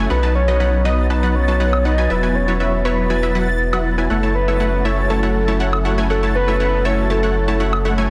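Emotional, expansive progressive house at 120 BPM in F# dorian, this excerpt sets a mellow, round octave-layered synth lead with chorus, vibrato and digital delay over punchy detuned supersaw stabs with a filter sweep, a lush chorused unison pad in the background, a thick saturated sub bass up front, a dreamy reversed granular texture high above, and an electronic woodblock entering at 1.7 s, all moving through B, Esus2 and F#m7 in a dense, heavily limited mix with light digital ambience.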